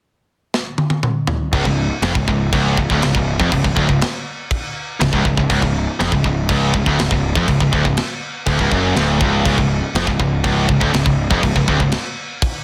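Heavy metal at 121 BPM, heavy and relentless, this section of a longer piece opens with a tight, up-front acoustic drum kit playing a fill across crash, kick, snare and toms from 0.5 seconds, then at 1.5 seconds three low distorted guitar riffs arrive on C#, a bright picked one at the fore, a double-tracked high-gain one and a dark, sludgy overdriven one tucked behind, joined by a growly fuzz bass, all in a dry, dense, heavily limited modern mix.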